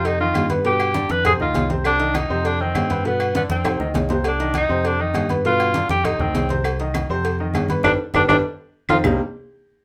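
A driving salsa groove at 200 BPM in 4/4 with a straight feel in C minor, this passionate excerpt from a longer piece is carried by congas with a bright, thin-skinned, low-tuned, hard-handed sound set back in a small room, alongside soft-handed, round cowbell and bongos and ringing metal-shell agogo bells and timbales. Woody claves sit in the background from 0.3 to 3.8 seconds and return at 6.6 seconds. A fingered electric bass gives a dark, punchy, direct low end between G1 and G2. A clear, present grand piano spans a broad range in accompaniment, cycling through F5, G7 and C minor add9 and add11 chords before landing on Cm9. Up front, a vintage-toned tenor saxophone carries the solo melody between B3 and B4 with light vibrato in a pop style, while drum fills arrive at 3.6 and 7.8 seconds, the second joined by a band accent, all within a moderate studio reverb.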